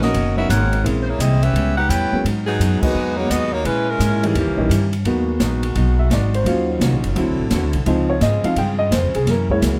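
A warm saxophone section carries the melody up front in this dramatic big band swing excerpt, with a band accent at 2.8 seconds, before the baby grand piano takes a natural-toned solo from 5.1 seconds while the saxophones fall back to tight vibrato chords, all over woody pizzicato upright bass, a clean hollow-body archtop guitar in the background, and an airy, polished drum kit with dark cymbals and a boomy kick.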